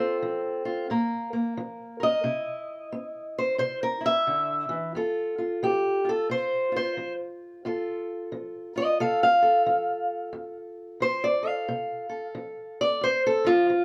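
Acoustic country blues with a soulful, swaggering mood and a swung feel, heard in this short 13.8-second cut from a longer piece. A lone fingerpicked steel-string acoustic guitar with a dark, boxy parlour tone sits up front, moving through F, Bb5 and C before returning to F at 4.9 seconds to repeat the phrase. Moderate small-room reverb gives the guitar an intimate sense of space.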